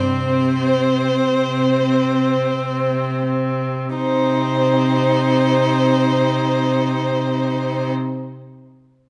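A cello sits up front in this brief cut from a slow, elegiac string quartet movement in C minor, its bowed low line smooth and even with a light vibrato. Above it, a first violin carries the melody with a focused, distant tone and vibrato, while a second violin plays a smooth supporting line in the background and a viola fills in the accompaniment with an even, vibrato-coloured sound. The four players move in a rubato 3/4 at roughly 42-48 BPM, and the tempo slows through the opening 4.0 seconds before the music settles on a C minor chord. The mood throughout is solemn and mournful. Close, detailed microphones capture each instrument with clarity, set within a moderate recital hall reverb that gives the quartet a sense of space.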